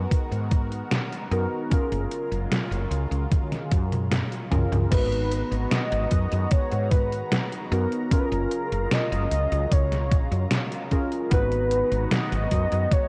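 Vaporwave at 75 BPM in G# dorian, melancholic and woozy, this excerpt from a longer piece sways between G#m9 and F#maj9 chords over a straight 4/4 pulse. A lush, detuned unison pad holds sustained chords, coloured by chorus and phaser, while warbly lo-fi synth keys supply mellow, nostalgic accompaniment through analog chorus and tape echo. A round, hollow-body fretless electric bass sits up front with a thumpy, overdriven electronic kick and a detuned 8-bit drum machine whose fat snare, hi-hat, toms and crash carry sampler grit and gated reverb. A drum fill runs from 3.3 to 4.9 seconds, and at 4.9 seconds a velvety synth lead with vibrato enters to carry the melody through chorus and tape echo. Light digital ambience, cassette tape texture and a faint mains hum give the recording its hazy, worn character.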